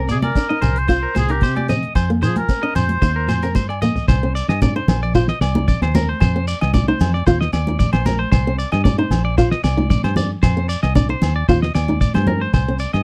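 Dry and close, with little reverb, this 1970s-style studio recording catches a highlife guitar band mid-song in C minor at 114 BPM in a straight 4/4, with a warm, danceable mood. A clear, present oboe carries the melody from 0.1 to 3.5 seconds, its soft attack and light vibrato giving it a classical character, before a drum fill at 3.8 seconds leads into a new section. The cloth-damped, thuddy drum kit has a fat snare, tight kick, rim click, hi-hat and toms under a rolled-off top. The round, foam-muted fingered electric bass and a small, fingerpicked nylon-string guitar hold down the harmony, which moves around Cmadd9, F5 and Eb5. Above them, a bright, twangy clean electric guitar plays picked arpeggios colored by vibrato and slapback echo. In the background, hard-hand, high-tuned congas with a compressed, saturated sound sit alongside ringing agogo bells, while a grainy, mellow shekere sounds distant, as if in a large room.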